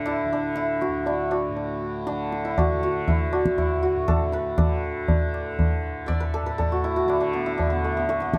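A bright, hammered santur leads this radiant, serene fragment of Hindustani classical music. Its ringing melody sits up front between A3 and E5, touched with tape echo. Beneath it, a softly plucked tanpura holds a warm, buzzing drone in the low register, its shimmer set behind the other parts. The tabla comes in at 0.1 s, high-tuned, close and dry, each stroke with a short ring. The music moves at a steady 120 BPM in a straight 4/4, rooted in raga bhupali on D. Close, detailed microphones and light reverb give this 8.4-second cut from a longer performance an intimate, acoustic clarity.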